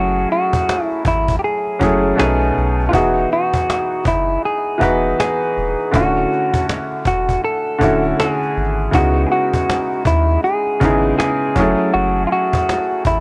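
Melancholic and nostalgic, this lo-fi hip hop excerpt moves at 80 BPM with a swung 16th-note feel, running through F#m7, B7, Emaj7, Dmaj7 and C#m11 before returning to F#m7 at 11.6 seconds. A clean, fingered electric guitar carries the melody up front through a low-pass filter and analog delay, over a felt-muted upright piano whose soft, mellow, intimate voicings are also filtered. A deep, round dub sub bass with transformer saturation sits underneath, a snappy cajon enters at 0.2 seconds, and light reverb, small room ambience and a gritty cassette-tape character colour the sound.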